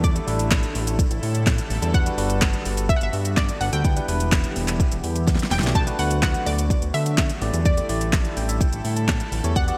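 Upbeat and summery, this dance-pop excerpt moves at 126 BPM in a straight 4/4, with a bright 1980s-style digital sheen and light reverb. A deep house drum kit sits up front with a deep kick, fat snare, metallic hats, handclaps and shaker, all treated with gated reverb, and it drops in a short fill at 5.3 seconds. Beneath it, a fat analog bass with a thick, nasal, saturated sawtooth tone pumps against the kick through sidechain compression. A barky, bell-like tine electric piano carries the accompaniment and also pumps, while a sweeping resonant pad with a slow attack and chorus hovers in the background. On top, a round, warbling analog pluck with chorus and delay plays the melody between D5 and A5, and a barely audible downlifter sounds through the opening 1.9 seconds. The chords cycle through A7sus4, Gmaj7, Em7 and D6, and the electric piano adds a fill starting at 8.1 seconds, shortly after the harmony returns to A7sus4.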